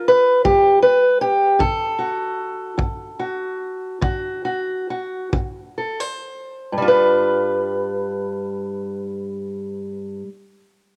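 Acoustic country blues in a laid-back, rollicking 12/8, cut from a longer piece and caught on a cassette home recording with light reverb, where a dark, boxy parlour steel-string guitar fingerpicks the melody up front across its 10.3 seconds, joined from 0.5 to 5.5 seconds by a tight, brushed kick drum with a rolled-off top, as the pace slows through the opening 6.7 seconds and the chords move from G7 to D and back to G7.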